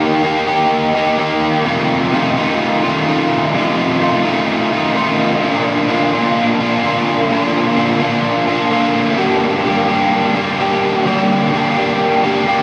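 Rock at 128 BPM in 4/4 with a straight feel, set in G minor and carrying a brooding, dreamy mood. A single overdriven electric guitar takes the solo for the full 12.6 seconds, its picked tone biting yet warm, double-tracked and placed up front, ranging from F2 to G4. Subtle chorus and delay color the guitar, while a huge ambient reverb with a long 9.3-second tail soaks the whole mix in a hazy wash. The harmony moves from Eb to F7, then to Bb, and settles on Gm at 9.2 seconds. Cut from a longer piece, this short passage feels like a moody, spacious moment suspended in its own echo.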